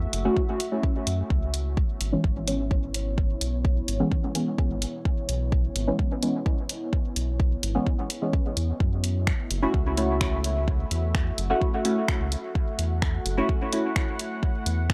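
A moody, detuned pad with chorus and built-in reverb opens this hazy, meditative dub techno excerpt in C# minor at 128 BPM alongside a round sawtooth-and-sine bass, both pulsing with sidechain pumping. Soft chord stabs, themselves pumping and coloured by phaser, chorus and dub echo, arrive at 0.2 seconds, followed by a deep, up-front electronic kick at 0.4 seconds, while an overdriven analog drum machine adds finger snaps and hi-hat that sound re-recorded in a large room. The harmony shifts between F#m7 and C#m7 over a dry, gritty hardware recording with transformer saturation.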